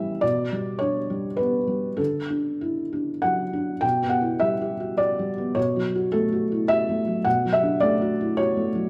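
A felt-muted upright piano plays alone from the very start, its soft, dark tone sitting up front with audible action noise and short sustain in a reflective, intimate neoclassical minimalist piece in 3/4 with a rubato feel. Moving from G/B and Dadd9 into a second passage at 3.8 seconds that shifts through Em/B, F#m/B and D/B, the playing spans A2 to G5. A moderate large-studio reverb and the sense of a live room frame this brief passage cut from a longer work.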